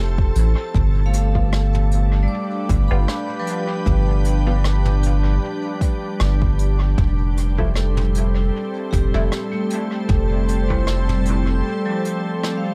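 Hazy and peaceful, this ambient dub piece moves at 77 BPM in 4/4 with a gentle 16th-note swing, set in G mixolydian and cut from a longer piece. A soft, organ-like pad holds sustained chords throughout, its pure, detuned tone softened by ensemble chorus and its own reverb, while a vibraphone struck with hard mallets spins metallic, ringing arpeggios that trail off through dub echo. Underneath, a round, soft sub bass sits up front until 11.6 s, joined by a deep, tape-kissed electronic kick, and a brushed jazz kit adds faint hi-hat, rim clicks and toms, also fed into the echo. From 1.4 s a muted, filtered chord stab with a plucky, short decay and a phaser drifts in the background. The harmony moves from F to G7 and settles on Fmaj7 at 7.0 s, before a brief break closes the passage in an echo-heavy studio reverb.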